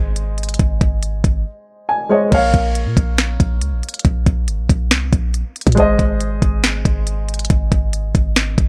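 A trap drum kit with a knocking kick, sharp snare, crisp hats, crashes and vintage 12-bit sampler grit drives this menacing, eerie half-time hip hop excerpt in Bb minor at 139 BPM, entering at 0.2 seconds over a deep, boomy 808-style sine bass with a noise layer and a dark, boxy grand piano whose short sustain and audible action noise sit close and intimate, all three up front in a dry mix as the harmony moves from Ab to Bbm at 2.3 seconds and back to Ab at 5.8 seconds.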